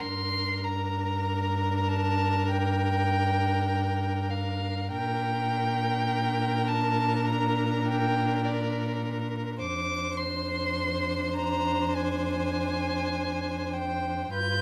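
The first violin carries the melody high and up front, its rich, expressive tone shaded with vibrato and portamento yet sounding distant, in this elegiac, yearning fragment of a slow romantic movement for string quartet in G minor at 51 BPM, played with rubato. Close beneath it, the second violin's bowed inner line and the viola's soft-attacked accompaniment add their own vibrato and gliding portamento, while the cello's focused, smooth-topped bass sits forward. Light reverb surrounds the harmony as it moves from Gm to Gm/Bb at 4.9 seconds and to Dm7b5/F at 9.6 seconds.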